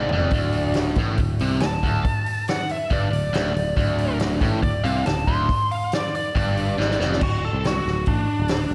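Blues rock power trio with a southern rock streak, this gritty, raunchy excerpt drives along at 140 BPM in a straight 4/4. A biting lead guitar carries the melody from the first moment, bright and overdriven with slapback echo and analog delay, while a double-tracked overdriven guitar plays a low riff that stops at 7.2 seconds. A picked electric bass adds a growly, direct bottom end, and a vintage acoustic kit sits up front with a fat snare, punchy kick, dark cymbals, hi-hat and toms, opening and closing the first stretch with drum fills. At 7.2 seconds the music lands on a D chord and the lead guitar breaks into a solo for the final moments. A lush hall reverb blended with small room ambience gives the whole trio a big arena sound.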